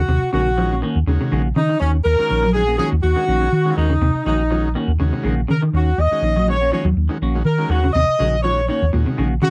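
A straight 4/4 groove at 122 BPM drives this funky afrobeat passage in Eb dorian, cut from a longer piece and resting on a single Ebm7 chord throughout. A round, dark hollow-body short-scale bass, played with the fingers and sitting up front, anchors the low end, while a tight, warm horn section carries the melody close-miked and equally forward, with light vibrato. A bright trumpet with a smooth top and vibrato plays a second line tucked in the background. A twangy, slightly broken-up picked electric guitar, thickened by ensemble chorus, spins arpeggios. From 0.3 to 9.3 seconds, a buzzy, overdriven vintage combo organ adds accompaniment alongside clean, fingered stabs from a semi-hollow guitar treated with phaser. The sound is dry and close, in the manner of a 1970s studio recording, with little reverb.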